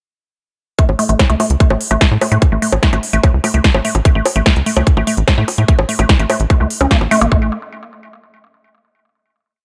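A dry, up-front mix with little reverb carries this short, complete psychedelic trance piece, hypnotic and intense, in a straight four-time drop from 0.8 s to 7.3 s before a final chord. A tight electronic kick pounds four-on-the-floor, joined by a techno kit of punchy snare backbeat, smooth hi-hats and bongos, while a nasal sequencer bass gallops in sixteenths beneath. Over them a woody, wave-folded pluck with chorus, digital delay and sidechain pumping plays a dark acid riff with accents, its three-step loop drifting against the bar.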